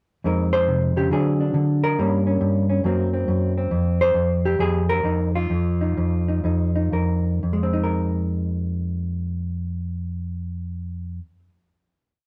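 A clean, dark hollow-body electric guitar plays alone up front in this brief, moody solo jazz piece in F minor, its fingered, motif-based melody moving over a steady thumb at a swung 116-138 BPM through Fm7, D7#11, Gdim and Gb chords before slowing from 3.7 seconds and settling on a final Fm7 that rings from 7.4 seconds in a lightly reverberant room.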